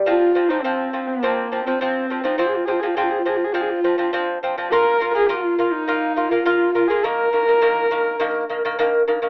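Vast and solemn, this short excerpt of Mongolian folk music sets a dark, husky horsehead fiddle singing a bowed melody with light vibrato and portamento over a delicate, fingerpicked lute whose double gut strings ring out in arpeggios, both up front in a rough home-demo mix with light reverb and an AM-radio tint.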